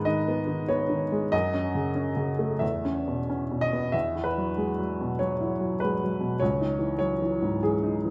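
Hopeful and intimate, this brief excerpt of neoclassical minimalist piano moves in E major at a rubato 89-99 BPM in 4/4, tuned to A4 = 442 Hz. A lone upright piano, woody and up front with audible action noise, plays from C#2 to E5 through G#m, F#m and E5 before settling into Eadd9 at 3.9 seconds and C#madd9 at 6.4 seconds. A wet recital hall reverb with a 1.3-second decay surrounds the natural, clear tone.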